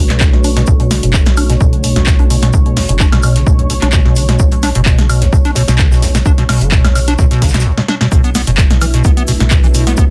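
A straight 4/4 pulse at 129 BPM drives this trippy, playful acid house excerpt, anchored by a punchy, tape-warm electronic kick sitting up front. A second punchy analog drum machine adds handclaps, hi-hat, snare and woodblock with a short room on the snare, clap and hats. Meanwhile a damped 70s acoustic kit sits in the background with a fat, dry snare, shaker and a rolled-off top, its hats and percussion pumping with the sidechain. The squelchy, hollow square-wave acid bass riff carries the hook, resonant and saturated through tube drive with subtle chorus and delay, as a filter sweep runs across it over Bm7. Beneath it, a round, deep analog bass evolves with a ring-modulated edge, while a moody, detuned analog pad holds sustained chords and a blurred granular cloud pad drifts with its own built-in reverb, all of these pumping with the sidechain. After a brief break from 7.7 seconds and a drum fill from 7.8 seconds, the drop lands at 8.1 seconds, where a grainy, bright egg shaker enters very quietly. 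The mix is dry and dense, with a heavily limited modern master.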